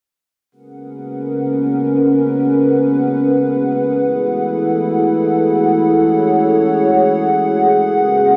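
A moderate, lush hall reverb with a 2.4-second tail surrounds this short breakbeat fragment, cut from a longer piece. The only part is a deep, moody dark analog pad, set up front, which enters at 0.9 seconds and holds sustained chords in free time until the end. Its tone blends detuned square, sawtooth and triangle waves with a sub octave, all wave-folded and thickened with chorus. The pad has a slow attack that lets each chord bloom gradually. The harmony moves from G#m11 to F#m11 at 4.0 seconds and returns to G#m11 at 7.8 seconds, giving the passage a swaggering, gritty mood.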